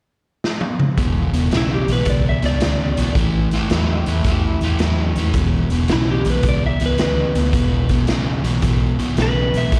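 A drum fill on a raw, gritty garage kit opens this laid-back, soulful electric blues shuffle at 110 BPM, before an overdriven semi-hollow guitar riff with slapback echo and a round, foam-muted fingered bass arrive at 1.0 seconds, a slightly broken-up slide guitar carries the melody from 1.6 seconds, and a lo-fi second guitar through a small old amp adds a quiet line from 3.5 to 5.5 seconds over E5 and A5 chords, all heard as a live gig through the venue's PA in recital hall reverb.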